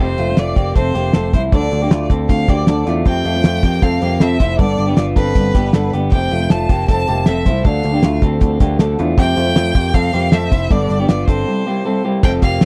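A straight 4/4 pulse at 157 BPM drives this youthful, nostalgic slice of jangly indie pop in F major, with a cloth-damped, thuddy drum kit entering at 0.2 s, up front with a fat snare, tight kick and dark cymbals, over a round, direct picked electric bass. An electric guitar through a small old amp plays twangy, slightly broken-up arpeggios, while a fingerpicked steel-string acoustic guitar sits in the background and a clear, focused violin carries the melody with vibrato, sounding distant through tape echo. The dry, close 1970s-style studio sound cycles through F, Dm and G before a brief break from 11.5 to 12.2 s lands on C, the clip being cut from a longer piece.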